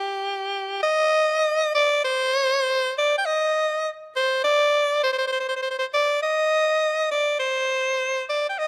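A raspy soprano saxophone plays alone from the start, carrying a still, solitary line between G4 and G5 in C minor, with vibrato and scooped notes and a gritty, pop-style edge. This brief excerpt of Japanese traditional chamber music moves in a slow, rubato 4/4 around 51 BPM, ending at 8.7 seconds. The close, detailed miking keeps the saxophone up front in light reverb, with lossy compression artefacts in the sound.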